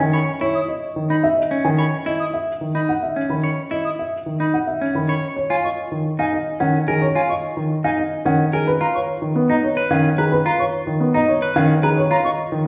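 Heard from further back in a recital hall with a wet, lingering reverb, this short cut from a longer classical piece of minimalist pattern music moves in a propulsive, bright 3/4 at 109 BPM, settling into E-flat minor at 5.4 s. A dark, mellow baby grand carries the melody with intimate, audible action noise and short sustain, while a second, worn baby grand sits up front with long-sustaining accompaniment. A clean, picked electric guitar and an airy silver concert flute with soft attack and expressive vibrato spin arpeggios over harmonies that move through Eb7(no3), Db7sus2/Eb and a rootless Bmaj9.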